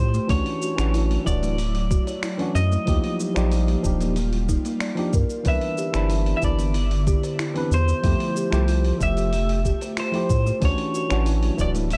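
A round, deep analog bass sits up front in this blissful, relaxed sunset chillout excerpt at 93 BPM, alongside a slightly broken-up electric guitar melody with lush chorus and delay, woody kalimba arpeggios, a worn, slightly out-of-tune tine electric piano through a combo amp, a very quiet ethereal pad, a thumpy electronic kick and a gritty, tape-warm sampler-style kit of finger snaps, hi-hat and shaker, all moving through Dmaj9, Ebmaj9, Cmaj9 and Fmaj9 in a dark production with light reverb.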